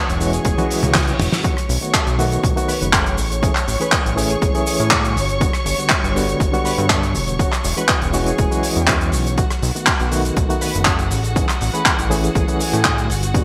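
Feel-good and sunny, this 121 BPM nu-disco excerpt pairs a barky, reedy electric piano with fast tremolo and delay, lush bowed strings, a fat detuned analog bass, a dry, damped 70s drum kit with handclaps, shaker and gated reverb, a punchy overdriven electronic kick, a thick sawtooth unison lead in the background with subtle chorus, and a reverse cymbal from 0.7 to 1.4 seconds under a drum fill. The piano, strings and bass pump together over E69, B7, Amaj7 and Gmaj7 chords in a bright 1980s-style digital production.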